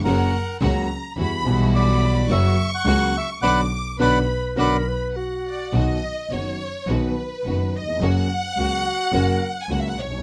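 Tango with a tense, melancholic mood and a rubato feel, this short passage cut from a longer piece sets a dark, reedy bandoneon melody up front against an expressive violin section, a piano with deep bass and long sustain, lush string stabs in the background, and an intimate bowed double bass played sul tasto, while a subtoned jazz-style clarinet with scooped notes joins at 4.0 s, a band accent arrives at 3.4 s, and after the bandoneon stops the violin section takes a solo from 5.7 s as the harmony turns to major, all captured with close, detailed microphones in a moderate club ambience.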